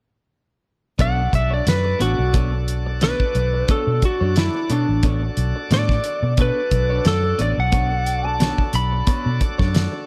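At 1.0 s a cloth-damped, thuddy drum kit with a fat snare, tight kick and hi-hat comes in up front with a dark, round, foam-muted fingered electric bass, setting up a mournful, soulful straight-eighth soul blues groove with a light sixteenth-note swing. Over them a lightly driven lead guitar takes a solo, its twangy, picked, compressed tone sitting up front as the melody moves between D4 and B5 until 9.4 s. A tonewheel organ fills in behind with a full, shouting, clean sound, its key click and slow rotary speaker coloring the part. An electric guitar through a small old amp adds slightly broken-up stabs in the background, touched with spring reverb. The passage rests on a single chord, with a studio reverb lending space, and this short cut from a longer piece ends at 10.1 s.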